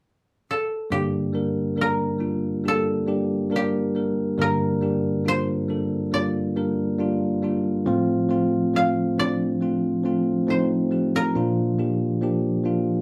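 Heartbroken and emotional, this slow pop excerpt at 69 BPM in G minor opens with a mellow, woody koto melody played with fingerpicks at 0.5 seconds, joined at 0.9 seconds by a bell-like tine electric piano whose bright, clean chords move from G minor through F over A to B-flat. Both instruments sit up front, the koto dry and acoustic and the electric piano direct, set in the wet ambience of a small room where the band plays live together.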